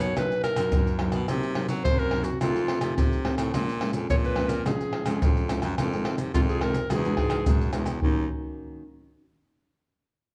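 Yearning and bittersweet, this samba-choro excerpt moves at 107 BPM in a straight 4/4 in Eb minor. A bright, present clarinet carries the classical-style melody over fingerpicked nylon-string guitar, whose finger squeaks can be heard, and a baritone saxophone with vibrato holds down the bass line. Up-front maracas, pandeiro, tamborim and a deep surdo have a vintage, band-limited character, and the whole sits in a wet, large studio reverb with a dark production before the guitar rings on alone until 8.8 s.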